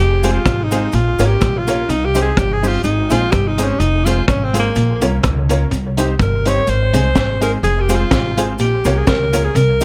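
This ska excerpt feels bouncy and joyful, with a light swing to its eighth notes and a chord cycle that repeats through its roughly ten seconds. An up-front alto saxophone carries the melody as a solo throughout, its bright, pop-style tone touched with light vibrato and dressed in tape echo and plate reverb. Beneath it, a woody pizzicato upright bass sits forward in the mix, while a very quiet, clean semi-hollow guitar picks a low riff and a dark, compressed electric guitar plays fingered accompaniment in the background with spring and plate reverb. From 0.2 seconds a detuned, jangly honky-tonk upright piano adds vintage stabs with its own echo and reverb. A saturated, gritty breakbeat kit with a tight kick, high-tuned snare, rim clicks, hi-hat and a rolled-off top drives the groove, joined by a grainy cabasa tucked far back in a small room.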